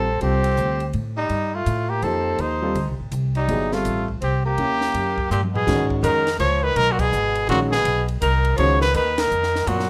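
Modal jazz in a hypnotic, spiritual mood, swinging in 3/4 at 165 BPM, where an up-front, clear trumpet carries the melody with vibrato and scooped notes over a bright tenor saxophone second line, warm grand piano accompaniment and a woody, thumpy pizzicato upright bass, while a dry cocktail drum kit with dark cymbals, a high-tuned snare and a punchy kick enters at 0.2 s and plays a fill before the key moves from C dorian to G# dorian at 5.7 s, with band accents punctuating the closing section under light reverb.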